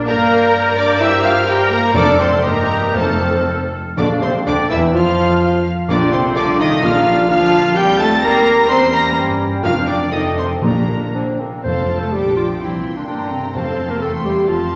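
This spirited, lively classical-period movement for symphony orchestra opens at once with a mellow solo clarinet, a pure, soft-attacked flute ensemble in the background, a distant, roomy bassoon and rich bowed cello and double bass sections, all in a quick 2/4 at 127 BPM with a rubato feel in Bb major. A moment later the bright, intense violin section takes the melody high above, supported by a smooth second violin line in the background, a very quiet, focused viola section and tight French horn chords. Articulate timpani struck with hard mallets enter at 1.9 s, and a distant trumpet section adds stabs from 4.0 s, giving the passage a ceremonial lift. The flutes and bassoon drop away just as the music turns to F major at 11.6 s, while the strings, clarinet and horns carry on to the cut. A wet scoring-stage reverb envelops the orchestra, lending the sound a spacious glow.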